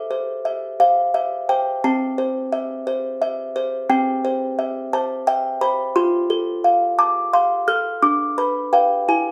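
A classical lullaby for solo music box, this dreamy, tender excerpt sways in a slow, rubato 6/8 at 58 BPM and settles into A minor, its delicate, tinkling plucks sounding small-boxed, mellow and slightly out of tune, sitting up front in light reverb across a range from C4 to F6, with harmony moving from Am through Am/C and F to Bdim/D.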